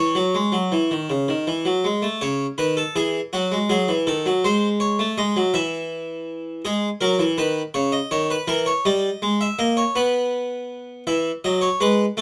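Lively and elegant, this brief excerpt of a baroque-style two-part invention in C# minor moves at 54 BPM in a straight 6/8, with a solo Flemish-style harpsichord on two sets of strings sounding airy, plucked and full from up front in light reverb across its range from C#3 to E5, passing through G# and G#m harmonies before settling on E at 11.1 seconds.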